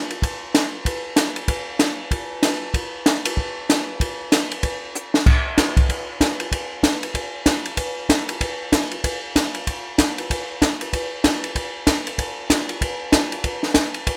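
A moderate studio reverb surrounds a compact cocktail drum kit placed up front, its dry acoustic sound built from dark cymbals, a high-tuned snare and a punchy kick, along with hi-hat, ride and crash. This short jazz passage carries a swinging, soulful feel in 4/4 with a swung eighth-note lilt. The drums play alone throughout, and a brief fill at 4.9 seconds leads into a second pass of the same section.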